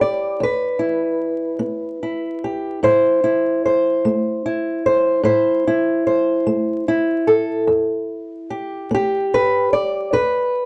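Set in a slow 12/8 with a straight feel, this brief cut from a longer acoustic country blues piece has a brooding, smoky mood. A single fingerpicked old ladder-braced acoustic guitar carries it alone and up front, its boxy, woody tone shaped by old strings, moving from E minor to A minor and back to E minor at 7.7 seconds. Light reverb and vinyl crackle give the dark production an aged character.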